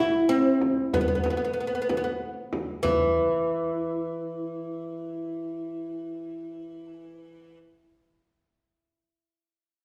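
A bright, woody oud carries the melody from the first moment, plectrum-plucked on its fretless double strings and set up front, moving between E3 and E4 across the 7.6 seconds of this short cut from a longer Arabic maqam ensemble piece. The mood is melancholic and hypnotic, at 63 BPM counted in dotted quarters in a straight 6/8, with tuning set to A4 = 441 Hz. A large, deep frame drum joins at 0.6 s, heard close and sitting lower in the balance than the oud, and it stops at 3.1 s, shortly after the music moves into a second section at 2.8 s. The oud then carries on alone to the end. Both acoustic instruments ring out in the generous reverb of a church or concert hall, lending the sparse pairing a spacious air.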